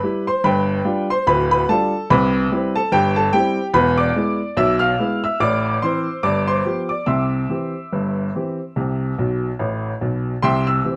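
Cheerful and lively, this short cut from a longer ragtime piece features a solo upright piano in a two-beat metre with a gentle swing on the sixteenths. The piano has a clear, woody tone with a vintage character and long sustain, sitting up front in the sound. Its playing spans from deep bass notes low on the keyboard up into the bright upper register, moving through a progression that starts on G7, settles on C, then passes through E7 and Am before returning home via G7 to C. A fill from the piano between 9.2 and 10.4 seconds rounds off the passage. The recording is close and detailed, with light reverb adding a touch of space around the instrument.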